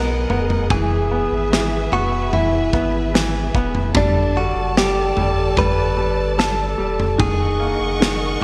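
Bright, 1980s-style digital production wraps this short cut from a longer pop ballad in a moderate, lush hall reverb with a 2.8-second tail. At 74 BPM in a straight 4/4, the mood is tender and heartfelt, tuned slightly under standard pitch to A4 = 439 Hz. A clean, direct-recorded electric guitar carries the melody with a picked, compressed tone, dressed in chorus and digital delay. Beneath it, a brilliant, woody upright piano with short sustain plays the accompaniment, while a studio string section holds expressive, vibrato-rich chords with a smooth top, and a saturated sub bass adds deep, thick, sustained low end. The acoustic drum kit enters at 0.3 s with a tight kick, medium-tuned snare and toms, mid-forward and rolled off on top, sitting under gated reverb. The harmony moves from B6 to E, then Gadd9 at 4.0 s, landing on D#m7 at 7.2 s.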